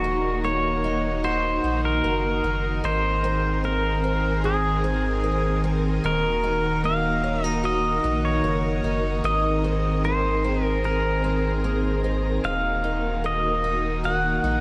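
Hazy and ethereal, this dream pop excerpt drifts at 75 BPM in a straight 4/4, settled in Eb dorian as it rocks between Ebm and Abadd9. A clean, compressed electric pedal steel guitar carries the melody up front, its fingerpicked slide lines shaped by volume swells and trailed by digital delay. Beneath it, a vintage string machine voiced as violins holds bright, sawtooth-edged sustained chords with a slow attack, a moving notch and ensemble chorus. A picked twelve-string acoustic guitar adds octave-doubled arpeggios with an auditorium-like shimmer, thickened by lush chorus and digital delay. A deep, round sine sub bass sits up front with a fast attack and sustained notes, while a moderate shimmer reverb with a 5.6-second tail bathes the whole 14.6-second passage, which is cut from a longer piece.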